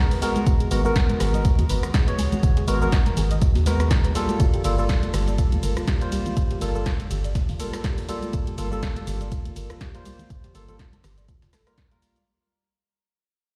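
Heard as if played on a big sound system in a bare room, this deep house excerpt sits in a large studio reverb with a faint vinyl crackle, its mood warm and hypnotic at 122 BPM in 4/4 with a 56% swing on the sixteenths. An overdriven, layered electronic kick drum is up front, joined by a punchy analog drum machine with tape-toned hi-hat, ride, rim click, shaker and snare, while a gritty, pitched-up, sampler-style breakbeat kit adds very quiet hi-hat, snare and tambourine underneath. Bright, high-tuned congas played with hard hands sit in the background, and a hollow, dark, organ-like FM bass enters at 0.5 s with sidechain pumping. A percussive organ stab with a ring-modulated, noisy edge plays short stabs through subtle chorus and tape echo, and a soft, round, full-bodied pluck spins background arpeggios through ensemble chorus and tape echo, both pumping with the kick. The harmony moves from G#m9 to Gm9 at 4.4 s, where the piece also begins its fade-out, which carries on to the end of this section cut from a longer track.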